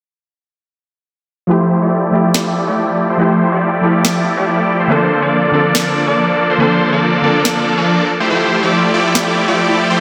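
Playful and lush, this future bass excerpt at 141 BPM in F major moves in a half-time, lightly swung feel as huge, detuned supersaw chords carry the riff up front under a filter sweep from 1.5 s, a soft round pluck with chorus and analog delay accompanies until 8.1 s, a sharp electronic snare keeps time, and a very quiet, ringing concert harp adds arpeggios from 8.3 s, all soaked in a dreamy church reverb over Fmaj9 and Bbmaj9 chords.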